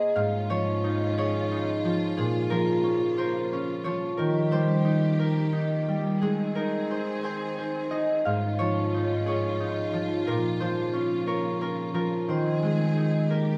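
A concert harp carries the melody in this gentle, innocent lullaby, its fingerpicked notes ringing up front in the mix across a span from low to high register. Beneath it, a clear studio string section holds sustained, bowed chords with a touch of vibrato, sitting lower in the mix and keeping a focused ensemble sound. Both parts play together throughout the 13.6 seconds, set in a 6/8 children's-music feel with a straight pulse. The harmony moves unhurriedly from Dbadd9/Ab through Bbm and Eb to Ab, then repeats the Dbadd9/Ab and Bbm before settling on Ab/Eb. A moderate studio reverb adds a soft sense of space to this short section cut from a longer piece.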